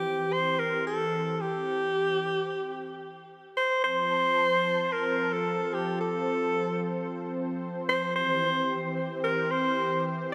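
Synthwave in F major at 111 BPM in a straight 4/4, this short cut from a longer piece feels romantic and dreamy. An alto saxophone carries the melody up front, played solo in a jazz style with vibrato, breathy subtone and scooped notes, and a digital delay trails its lines. Alongside it, an analog pad holds sustained chords from start to finish, its detuned sawtooth tone smooth and mellow with a soft attack, a long release and a shimmering chorus. The harmony moves from C to F at 3.8 seconds and returns to C at 8.2 seconds, with a brief break just before the change. A lush hall reverb bathes the mix, and the production has a bright 1980s-style digital sheen.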